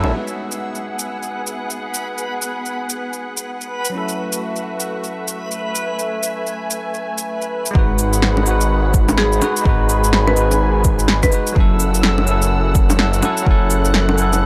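A menacing, detuned saw bass surges in up front at 7.8 seconds alongside a deep, overdriven electronic kick, anchoring this ghostly, wistful future garage excerpt at 126 BPM with a swung 16th-note feel over G#m7 and F#m7 chords. Before that, a bell-like tine electric piano with tape echo and a veiled, con sordino string section under a filter sweep share space with a reversed, dreamy granular texture, all over punchy, overdriven electronic bongos, shaker, cabasa and snare. The piano and strings carry 12-bit sampler grit and sidechain pumping, and a dry, buzzing marimba line with tape echo appears in the background from 9.2 seconds, all in a light reverb.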